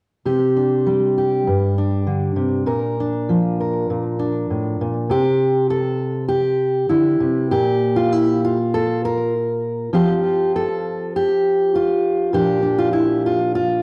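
A full-bodied, up-front fingerpicked steel-string dreadnought guitar carries this short, hopeful folk fragment alone, playing in C mixolydian at 100 BPM in a straight 4/4 with a slapback echo on its notes. Its harmony moves from Csus2 to Bb, then through Cadd9, a chordless stretch at 7.5 seconds, F and back to Bb, giving a pastoral, open-air feel. The recording sits in a moderate large studio reverb and carries the worn, warbling pitch drift of old cassette tape, and the passage is clearly cut from a longer piece.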